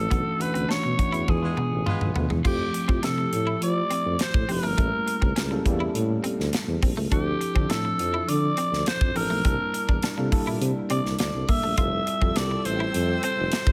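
Polished 1980s jazz-funk pop at 103 BPM in a straight 4/4, carrying a nocturnal, bittersweet mood through a chord path from Bm11 and E7b9 into Fmaj7, A7b9, Dm9 and C13 before settling on Fmaj9. A raspy, gritty alto saxophone sings the melody up front over a worn, slightly out-of-tune tine electric piano with lush chorus, a twangy picked electric guitar riff in the background, and a mellow tuba holding down the bass, while a punchy, airy acoustic drum kit opens with a band accent and a drum fill under a brief, loosely doubled horn section line at 1.4 seconds. Near the end, at 11.8 seconds, a woody bowed string section slips in with sustained chords, all set in studio reverb on a clip cut from a longer piece.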